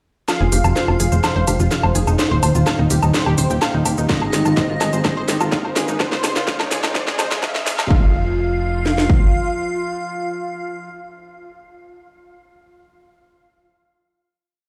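Dramatic and hypnotic, this short melodic techno piece in F minor at 126 BPM builds from a thick, detuned unison lead playing a repeating riff, an airy, dreamy lead doubling it an octave higher, a round analog pluck stepping through a 32-step arpeggio, a punchy sawtooth sequencer bass rolling in sixteenths, and an overdriven, layered kit of smooth hats, shaker, woodblock and cracking snare, with a very quiet riser entering at 3.6 seconds and a heavy four-on-the-floor kick joining at 4.1 seconds under a filter sweep and drum fill, until the build gives way to a final chord at 7.9 seconds, the synths and bass pumping with sidechain in a large, reverberant room.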